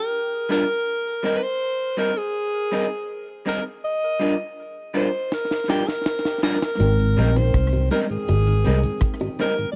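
A straight 4/4 lovers rock reggae groove, smooth and sweet, opens with a clear, up-front alto saxophone melody with scooped notes and tape echo over dark, slightly broken-up guitar stabs, then a deep reggae drum kit with a high-tuned snare and slapback echo enters with a fill at 5.3 seconds, before a round, foam-muted fingered bass, tight bongos, a dreamy chorused FM electric piano with a soft pad, and a very quiet slow-rotary tonewheel organ join between 6.8 and 7.0 seconds in this dry, close 1970s-style small-room recording cut from a longer piece.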